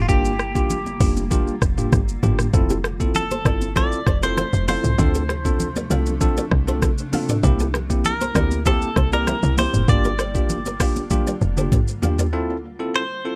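Hypnotic and mellow, this afrobeats excerpt moves at 98 BPM in a straight 4/4 over Gm7, Fmaj7, Dm7 and C7, with an up-front electronic drum kit of knocking kick, metallic hats, rim click, shaker and toms, plus a fill from 11.1 to 12.3 seconds. A woody, punchy log drum bass anchors the low end beneath a bell-like tine electric piano, while damped, high-tuned congas with thick skins and a cloudy granular pad with its own reverb sit in the background. A twangy, compressed clean electric guitar carries the melody with tape echo, and a fingerpicked nylon-string guitar joins at 2.7 seconds with a classical riff, finger squeaks and the same echo, in an otherwise dry mix.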